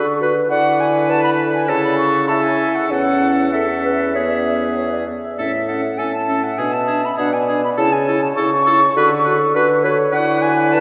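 A quick classical-period movement for wind quintet, this cheerful, graceful fragment of a longer piece moves with a flexible, rubato feel. The silver concert flute carries the melody up front, its mellow, airy metal tone shaped by vibrato, tongued notes and rolled-off highs. Beneath it, a bright oboe with light vibrato sings a second line, while a dark French horn and a soft-attacked, distant clarinet fill in the accompaniment. A bassoon with light vibrato anchors the bass, and all five instruments play together from start to finish across the 10.8 seconds. The ensemble sits in a church or concert hall, bathed in a lush cathedral reverb with a 4.7-second decay that lends the clarinet in particular a roomy glow.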